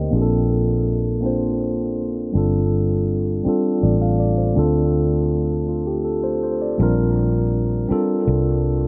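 A mellow tine electric piano with tape echo, heard up front through built-in speakers, carries this sultry, late-night slow R&B excerpt in 6/8 at 54 BPM, moving through Bbmaj9, G9sus4, Dm7 and Bb69 over a dark, round, foam-muted electric bass, all set in a plate-reverb, echo-heavy mix with a filter sweep running the full 8.9 seconds.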